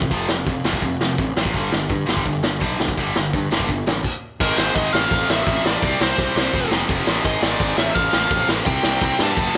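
Punk rock at its most rowdy and energetic, this short cut opens with a tight, double-tracked distorted guitar riff and a gritty, boomy garage drum kit, both up front in a dry room, joined by a growly fuzz bass. It breaks for a brief stop at 4.0 seconds, then crashes back in at 4.4 seconds as a bluesy overdriven lead guitar with tape echo carries the melody to the end.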